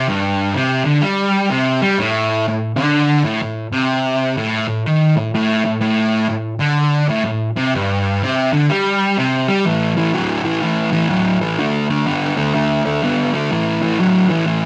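The eighth notes swing with a gentle lilt in a steady four, giving this short rock passage, cut from a longer piece, a raunchy, gritty strut. A lone electric guitar carries everything, picked and drenched in fuzz distortion, double-tracked and placed up front, with a thick, warm grit spanning G2 to B3. It opens on a suspended Gsus24 chord that hangs for nearly ten seconds. At 9.7 seconds the part shifts into a new section of bare power chords, moving from A5 to D5 at 11.6 seconds and back to A5 at 13.5 seconds. A moderate studio reverb gives the sound a sense of a room, as if the take were played live.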